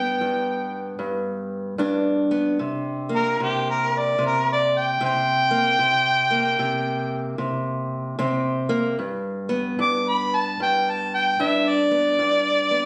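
Gritty and swaggering, this short acoustic country blues cut from a longer piece ambles at 75 BPM with a swung feel, as a mellow, vintage-toned harmonica with light vibrato carries a jazz-inflected solo melody up front over a boxy, parlour-sized fingerpicked steel-string acoustic guitar, moving from G to C5 at 2.6 seconds and back to G at 9.0 seconds, all caught on a phone in the room with a light touch of reverb.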